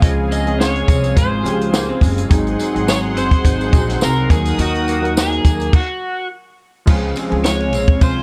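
This short indie pop and bedroom pop clip is nostalgic and dreamy, moving at 105 BPM in 4/4 with a light swing on the sixteenths, in D-flat major. An overdriven slide guitar carries the melody, played with fingerpicks and coloured by analog chorus and slapback echo. Underneath, a lo-fi, slightly broken-up electric guitar through a small old amp sits in the background with subtle chorus and a warbly pitch drift, joined by round, detuned analog keys with a filter sweep and cassette-tape colour, and a smooth, bright pad holding sustained chords up high. A woody, growly pizzicato upright bass anchors the low end, while a dry, up-front cocktail drum kit with dark cymbals, a high-tuned snare and a tight kick drives the groove, and a jingly tambourine sits quietly behind. The harmony moves from Dbmaj7 to Ab7 to Ebm, a stop falls between 5.7 and 6.9 seconds, and the phrase then returns to Dbmaj7, all with very little reverb.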